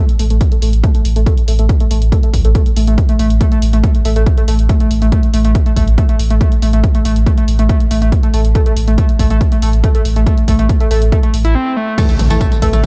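Driving peak-time techno at 140 BPM in 4/4, hypnotic and relentless, this cut from a longer piece sits on an A5 chord with a dark, dry production. A gritty, screaming overdriven synth lead carries the riff between A3 and E4, its distorted sawtooth and square tones given vibrato, lush chorus, cassette-tape color, delay and sidechain pumping, while a filter sweep runs across it from 0.0 to 12.0 seconds. Underneath, a deep, thick saturated sub bass holds A1 with tube saturation, a low-pass filter and pumping, and a heavy, up-front electronic kick drives the groove. A layered electronic kit of crash, hi-hat, ride, tambourine and toms sits further back, re-recorded in a large room like the kick. After a brief break at 11.6 seconds, a muted, full-bodied dub chord stab with phaser, chorus and delay enters in the background at 12.0 seconds, alongside a very quiet electronic impact.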